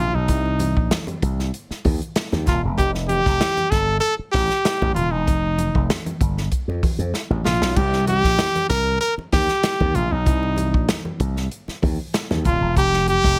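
A clear, close-miked trumpet carries a sly, funky solo melody with light vibrato in a jazz style, riding over a growly, electric slap bass pushed through an envelope filter. At 0.3 seconds an acoustic big-band drum kit with dark cymbals and a punchy kick joins alongside very quiet, low-tuned congas played with soft hands, and a drum fill at 7.1 seconds marks the move from the Cm7 and Fadd9 opening to a Cm stretch that closes on Fsus2. The sound is dry, with the trumpet, bass and kit sitting up front, though the kit carries an airy, polished hall quality, in this short excerpt cut from a longer piece.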